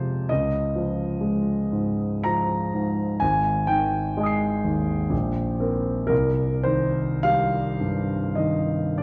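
In a 3/4 with free rubato, the tempo drifts between 43 and 68 BPM, giving this short impressionist solo piano passage a wistful, hazy air. A concert grand carries everything alone, ranging from Ab1 deep in the bass up to C7, with a warm tone, a rich low end and long, open sustain that sits up front. The harmony moves through Db69 at the start, Abmaj7 around 3.2 seconds, Bbsus2, and settles on Cm near 6.1 seconds. A recital hall reverb with a 1.5-second tail wraps the notes in a soft, dark glow. Cut from a longer piece, this nine-second fragment feels like a dreamy classical reverie caught mid-thought.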